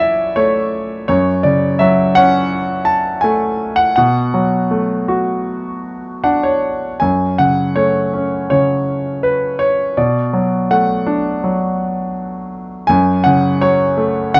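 A clear concert grand piano carries this lyrical classical fragment alone, its deep bass and polished tone sitting up front in the mix. The mood is reflective and wistful, with a rubato feel that lets the phrases breathe in a four-beat metre. The notes have a short sustain, and the piano spans from low in the bass to the upper middle of the keyboard. The opening section moves from F#m7 to Bm7, and a brief piano fill from 5.8 to 7.0 seconds leads into a second section, where the harmony passes through F#m and Bm7 before settling on F#m at 12.9 seconds. Moderate studio reverb and a dark, warm production give the passage an intimate, shadowed quality, as if it were lifted from a longer piece.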